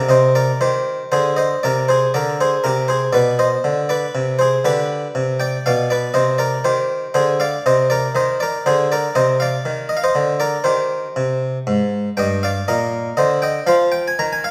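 A 12/8 pulse, stretched and eased with rubato, carries this radiant, flowing baroque-style suite movement for solo harpsichord, cut from a longer piece. The Italian-style instrument sits up front with an airy, plucked, round tone from a single set of strings, ranging from G2 to Bb5 as it moves through harmonies in C minor and closes on an open F5 at 13.7 seconds. A wet recital-hall reverb surrounds the playing with a spacious glow.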